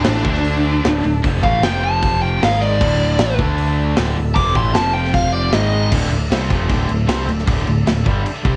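Hard rock with a menacing, heavy mood, cut from a longer piece and recorded at home on cassette with light reverb: a biting, overdriven lead guitar solo runs up front until 5.9 seconds over three picked rhythm guitars playing a riff, one with a phaser and one double-tracked with high-gain distortion, while a punchy, direct picked bass and a big acoustic drum kit with boomy kick and bright cymbals drive underneath, and a very quiet tonewheel organ with key click and slow rotary speaker holds sustained chords moving from Dm through F5 and G#5.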